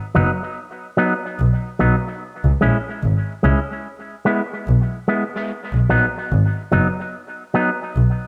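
An echo-heavy mix with moderate spring reverb gives this dub reggae excerpt a spacious, laid-back air. It moves at 73 BPM in 4/4 with a gentle sixteenth-note swing in B major, passing through B, C#m and E before settling back on B. A single bowed double bass sits up front on the bass line between F#1 and C#2, its tone dark, nasal and woody with a boxy edge and audible vibrato. An electric guitar through an envelope filter plays clean, fingered accompaniment from F#3 to E4, compressed and shadowy, with dub echo on its notes. The guitar enters at 0.1 seconds and stops at 7.7, while the bass carries on until 8.0.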